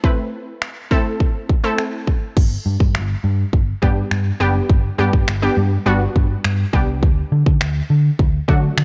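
Summery and upbeat, this dance-pop fragment at 103 BPM in G major sets a bright, detuned sawtooth unison pluck, with ring modulation, a filter sweep and sidechain pumping, over a punchy, layered house kit of kick, finger snaps and crash cymbal; at 2.4 s a dark, round hollow-body picked electric bass joins and also pumps, while the chords move from Am to G and then to D, and the dry mix carries the warble and pitch drift of worn cassette tape.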